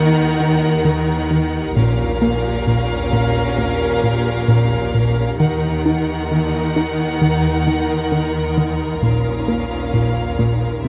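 Bowed violin sections carry a vibrato-rich melody and a smooth second line over a focused viola section, a distant cello section, a lush double bass section and a punchy, prominent plucked analog synth bass riff, while a mellow, very quiet fingerpicked Celtic harp rings until 7.0 s and a swarming, detuned granular drone hums in the background, giving this uneasy, mysterious cinematic excerpt in Eb minor at 66 BPM, moving between Ebm and Bbm, a moderate scoring-stage reverb.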